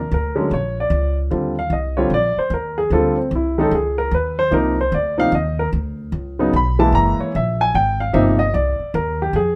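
This short, playful jazz fragment opens with an upright piano and a plucked upright bass together, swinging at 150 BPM in 4/4 in E-flat major. The piano carries the melody with a warm, up-front tone, ranging from its middle register up into its higher reaches. Beneath it the acoustic bass sits close and present, its steel strings giving a woody, thumpy pizzicato sound low in the register. From 1.3 s the piano moves into a solo that runs to the end at 9.6 s, while the bass carries on underneath. The harmony moves through rich jazz chords such as Ebmaj7, Dm7, Cm7, Gb9 and Abmaj7, and a light reverb adds a touch of room around the pair.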